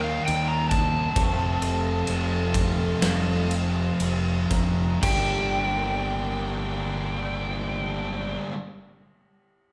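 A thick, bright fuzz guitar riff sits up front in this brooding, cinematic post-rock excerpt in G minor at 57-69 BPM, slowing through the opening 5.0 seconds over Ebmaj7 and F7 before landing on Gm, alongside a dark overdriven slide guitar melody, growling punchy fingered bass, lush close strings and a mellow, airy soft-mallet vibraphone arpeggio in the background that stops at 5.6 s, while a huge arena drum kit with a fat snare and punchy kick plays from 0.3 to 5.3 s, all captured as a band live in one room with moderate large studio reverb.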